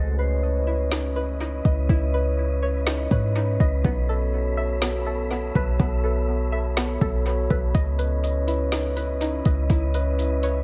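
A half-time 4/4 pulse at 123 BPM drives this hazy, spacious cloud-rap clip in C# minor, where a clean, boomy sine 808 bass sits up front under pure, ethereal glass harmonica chords pumping with sidechain, bright, twangy resonator-pluck arpeggios with chorus, low-pass filtering and analog delay, and a faint, breathy wind-like noise texture, while a soft-kicked R&B kit with a woody snare and metallic hats enters at 0.9 s over C#m9 and B7sus4 chords in an echo-heavy mix.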